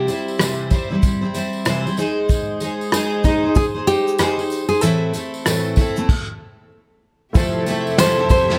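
Carefree and sunny, this acoustic pop excerpt moves at 95 BPM in 4/4 with a light 16th-note swing, its chords passing from C to Ab to Am. A bright, full-bodied nylon-string guitar carries the fingerpicked melody, with finger squeaks audible. Beneath it sits a double-tracked, picked steel-string jumbo acoustic guitar with fresh strings, up front in the mix. A vintage brush kit recorded in a small room adds a punchy kick, medium-tuned snare, rim click, shaker and dark, smooth cymbals, joined by a jingly tambourine from a live room. After a stop at 6.1 seconds, a woody upright piano enters at 7.3 seconds alongside a lush, bowed studio string section with vibrato sitting in the background, as the harmony settles on Fmaj7, all set in light reverb.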